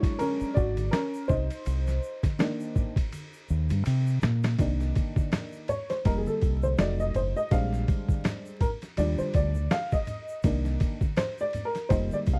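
Cool and smoky, this dry, close 1970s-style jazz-hop cut from a longer piece moves at 82 BPM with a 16th-note swing, as a dark, woody, slightly detuned upright piano with audible action noise solos over shifting jazz chords such as Bb7alt, Cm9 and Ebmaj9, while a gritty, pitched-down boom bap drum kit with a thumpy kick and tape-warm tone plays a fill from 3.1 to 4.6 seconds, a round, deep dub fingered bass enters at 0.4 seconds, and soft-handed shaker and congas sit in the background under vinyl crackle.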